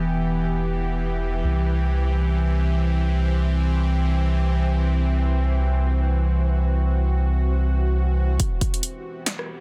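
A nasal, string-like sawtooth drone with vibrato and reverb sustains Em and C chords over a round, soft sub bass in this dark, heavy deep dubstep excerpt in free time, and at 8.4 seconds an overdriven electronic kick and a deep house kit with a punchy snare, hi-hat and rim click arrive in a short filter-swept build-up under a dense, heavily limited master.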